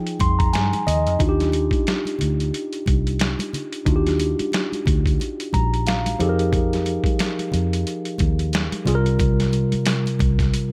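Sultry and late-night, this short neo-soul R&B excerpt moves at 90 BPM with a swung sixteenth-note feel, passing through Fm9, Ebmaj9, Fm11 and C7sus4. A clean, up-front tine electric piano carries the chords and adds fills at the opening, around 5.2 seconds and at 10.5 seconds, over a dark, round, foam-muted fingered electric bass. Gritty, compressed, pitched-down boom bap sampler drums with a thumpy kick and medium-tuned snare sit alongside very quiet, bright, damped congas played with hard hands and heard close and dry, and the mix carries little reverb.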